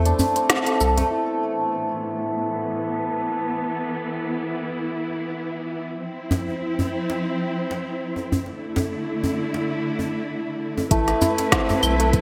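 A lightly swung 4/4 groove of crisp hats, a woody snare, claves and shaker from an organic electronic kit opens this meditative, mystical organic downtempo excerpt, alongside a round sine sub bass, a deep djembe with metal rattles, and shimmering santur arpeggios through digital delay, over a mellow bronze singing bowl ringing softly in the background; lush, expressive symphonic strings with vibrato and portamento enter at 1.1 s under a pumping low-pass filter sweep, and an overdriven electronic kick arrives at 10.9 s as the kit, bass and santur return, the whole mix set in a lush hall reverb with a bright 1980s-style digital sheen.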